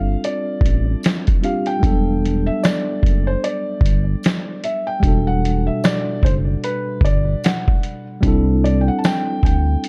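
A dark, dry production carries this melancholic, nostalgic lo-fi hip hop excerpt in E minor at 75 BPM with a 16th-note swing, where a soft, felt-muted upright piano with audible action noise sings the melody through tape echo and a low-pass filter over a worn, slightly out-of-tune tine electric piano, a smooth sawtooth-and-square synth bass gliding with portamento, a compressed, pitched-down sampler-style drum kit with a thumpy kick, and a jingly tambourine in the background from 1.0 s, as the chords move from F6 to Em11 at 1.8 s and C6 at 8.2 s.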